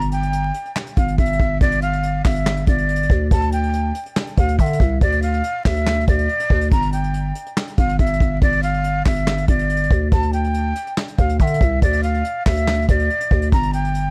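This hip hop and trap cut, taken from a longer piece, moves in a half-time feel with an eerie, dark mood. A breathy jazz flute carries the melody in an expressive, up-front voice, its metal tone softened by a gentle attack and vibrato, with lifted highs tamed by a low-pass filter and trailed by digital delay. Beneath it, a growling 808-style bass with a buzzy, sine-based body hits with a fast attack and decays. A soft brush drum kit keeps a natural, acoustic sound with a tight kick, medium-tuned snare, hi-hat and handclaps. The harmony rocks between a G5 chord and open, chordless stretches, returning to G5 at 13.5 seconds. A small room ambience, dark production and vinyl crackle give the whole a dusty, late-night atmosphere.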